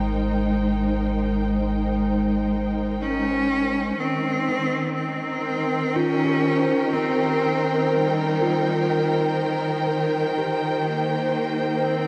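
Luminous and warm, this slow ambient fragment in Ab major at 61 BPM rests on a dark, woody string section holding lush bowed chords up front, joined by a deep, round sine sub bass that stops at 3.9 s, a rich, focused solo cello carrying the melody with vibrato and tape echo from 3.0 s, and an airy, ringing handpan playing meditative arpeggios in the background from 4.5 s, also through tape echo, the mix soaked in a huge, dreamy reverb.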